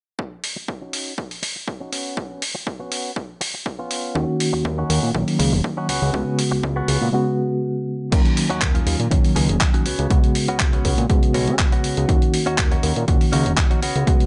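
A punchy electronic kick drum opens this sensual, funky filtered disco house excerpt at 0.2 seconds, sitting up front with a large-room character, while a barely audible tambourine adds a faint shaker-like rustle before dropping away. A dusty, gritty sampler-style soul kit quickly joins with crash cymbal, handclaps and hi-hat, its hats and cymbals pumping with the sidechain. A bright, scooped direct-recorded guitar riff, clean and picked but roughened by vintage sampler grit and a low-pass filter, pumps along over a steady alternation of Ebm7 and Db7sus4. At 4.1 seconds a reedy, worn electric piano, slightly out of tune and shimmering with fast tremolo and phaser, comes in up front, and a fat, nasal, detuned analog bass arrives moments later, both breathing with sidechain pumping. A filter sweep runs through the opening stretch and another begins at 8.1 seconds, all in a dry mix with a rolled-off top end.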